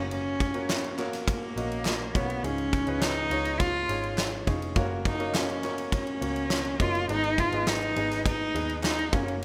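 A bowed cello opens this uplifting piano-driven pop fragment at once, its single player sitting up front with a nasal, focused, slightly boxy tone and vibrato as it carries the melody. A smooth, vintage-flavoured grand piano accompanies from the start, with a dark, round, foam-muted picked electric bass underneath. At 0.1 seconds a huge arena drum kit joins with a punchy kick, a fat snare and ride cymbal, sounding natural and close in a big room. Crisp group handclaps arrive at 0.7 seconds, sitting distant and in the background as if from a large room. The harmony moves through F#, C#add9, back to F# and on to G#m in a straight 4/4. The overall sound is dry and rough, like a home demo mix, and the music is an excerpt cut from a longer piece.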